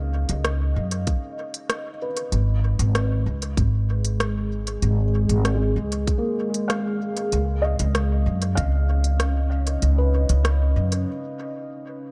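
A dark, detuned pad fades in beneath soft, felt-muted upright piano arpeggios trailing dub echo in this hazy, deep ambient dub excerpt at 96 BPM in straight 4/4, as a woody pizzicato upright bass sits up front over C#7sus2 and G#m chords, smooth electronic hi-hat and rim clicks with dub echo join, a tight electronic kick plays from 1.1 to 8.7 seconds, and by 11.1 seconds the bass and drums drop away, leaving pad and piano alone for a brief break in light studio reverb.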